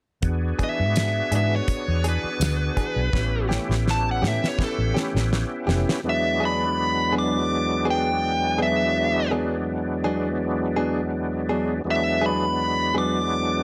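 Straight-eighth soul blues with a swaggering, laid-back feel, cut from a longer piece and set in light reverb. A thick, gritty tonewheel organ carries the accompaniment through a slow rotary speaker with chorus vibrato, while a round, foam-muted vintage electric bass and a dry, damped 70s drum kit, with its fat snare, tight kick, hi-hat and tambourine, sit up front beneath it. A dark, smooth overdriven lead guitar takes the melody from 0.6 seconds, and a bright, compressed clean electric guitar, recorded direct, adds picked stabs. The drums play a fill from 3.1 seconds, and the bass and drums drop out around 6.0 seconds. From there the organ and both guitars carry on over the E9 chord, with the clean guitar's stabs falling away just before the organ and lead guitar reach the end.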